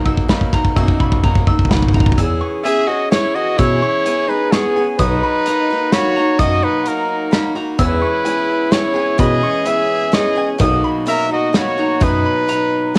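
Uplifting and warm, this indie folk piece in 3/4 opens with a short build-up: the loose indie drum kit plays a fill and a soft, felt-muted upright piano adds its own brief fill. Beneath them run a bright, boxy picked steel-string acoustic guitar, round double-strung mandolin arpeggios and a bell-like tine electric piano carrying the bass. At 2.6 seconds a smooth-topped trumpet with light vibrato takes the melody up front while a dark, woody fiddle, bowed sul tasto with portamento, adds a second line; the muted piano returns at 7.8 seconds, all captured in a home cassette recording with plate reverb on the piano, guitar and fiddle.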